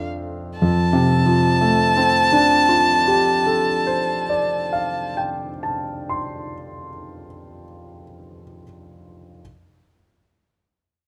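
In a slow, rubato 3/4 at 55 BPM, this pastoral, luminous fragment of an impressionist classical duo in F major drifts over F6 and F6/9 harmonies. A rich, focused violin with vibrato and a smooth top sings the melody up front until 5.2 s. The clear concert grand piano, with deep bass and a vintage character, carries the accompaniment on alone to 9.4 s, all captured by close, detailed microphones in a moderate recital hall reverb.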